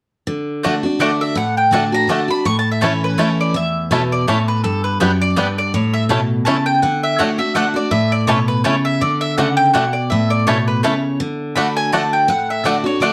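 Virtuosic and driving, this bluegrass excerpt in D major swings at 165 BPM in 3/4, opening with a bright, full-bodied dreadnought guitar picking the accompaniment from 0.3 seconds. A twangy, percussive banjo played with fingerpicks carries a melody through slapback echo and plate reverb, while a mandolin adds echoed stabs, both entering at 0.6 seconds. A second woody, double-strung mandolin takes the lead line from 1.0 seconds, warm and high, with slapback echo and plate reverb, as the chords move among D, A and G in a moderate studio room.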